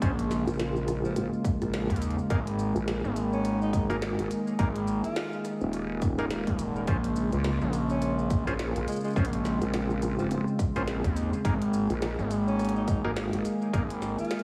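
A light reverb and small room ambience surround this glitch hop excerpt, with a faint mains hum underneath. Swaggering and funky, it moves at 105 BPM in 4/4 with a 58% swing on the sixteenths, in Bb minor, shifting between Bbm7 and Absus2. Up front, a gritty, saturated synth bass with overdrive shares the low end with a nasal, resonant vowel-sweep wobble bass carrying chorus that enters at 0.5 s. A punchy, tape-tinged electronic kick and a glitchy kit of tiny snare, clicky hats, rim click and shaker both sit in studio reverb. A smooth, warbling vintage analog pad holds sustained chords with chorus and sidechain pumping, and a percussive, stringy clav, also sidechained, stabs in the background through a diffuse ambient delay. From 1.0 s a warm tenor saxophone plays a classical-style solo melody, set back in the mix with the same diffuse delay.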